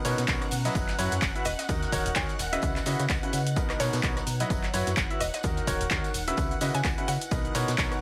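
An upbeat, euphoric piano house passage opens with a bright, brilliant concert grand playing a riff up front, its deep low end touched with tape echo and sidechain pumping, over a punchy, round FM bass and a shimmering vintage string machine sustaining violin chords in the background with ensemble chorus. A punchy analog drum machine adds overdriven handclaps, hi-hat, rim click and shaker in a swung 4/4 groove, joined at 0.3 s by an overdriven electronic kick. Beneath it all, a very quiet, warbling tape-like pad lends a nostalgic lo-fi haze, while a distant, roomy jazz brush kit and a very quiet tambourine fill in soft acoustic detail. From 1.5 s a woody, mallet-like synth pluck with chorus traces a percussive melody. The chords cycle through Bmaj9, F#7sus4, D#m7 and C#m11, keeping the feel-good lift going through this cut from a longer piece.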